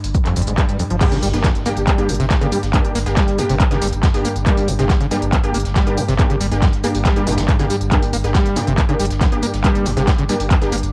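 Driving peak-time techno at 139 BPM in G minor, this relentless cut from a longer piece opens with a brief build where a very quiet swell leads into the drop at 1.0 seconds, landing on a G minor chord with an impact that rings until 2.7 seconds. An overdriven, punchy electronic kick sits up front, layered with a techno kit of crash, handclaps, smooth hi-hats and tambourine, while a gritty, compressed breakbeat sampler-style kit of hi-hat, shaker and snare plays in the background. Underneath, a deep, thick sub bass pumps against the kick, and a squelchy, resonant acid bass riff carries the groove with saturated sawtooth plucks through analog chorus and tape echo. From the drop, an aggressive, detuned rave stab with a sub octave adds bright, reverberant hits. Behind it all, an eerie, metallic FM drone sustains with a slow attack and long release, and the whole track has the light reverb and cassette character of a home recording.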